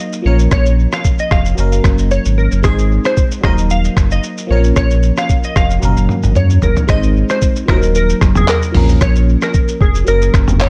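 Afrobeats at 113 BPM in Bb minor, this hypnotic, sultry cut from a longer piece rides a lightly swung 16th-note feel over a Bbm–Gb–Ab–Ebm progression, with a deep, sine-toned sub bass with octave and a muffled, pitched-down lo-fi sampler-style drum kit sitting up front, its thumpy kick, snaps, handclaps, hi-hat, rim click, shaker and toms carrying vintage 12-bit grit. A barking FM electric piano adds biting, percussive accompaniment through a phaser, while a glassy wavetable pluck carries the melody with crystalline, warbling, detuned tones washed in chorus and tape echo. A drum fill from 5.8 to 6.9 seconds leads into a new section, all set in a digital ambience with an echo-heavy mix.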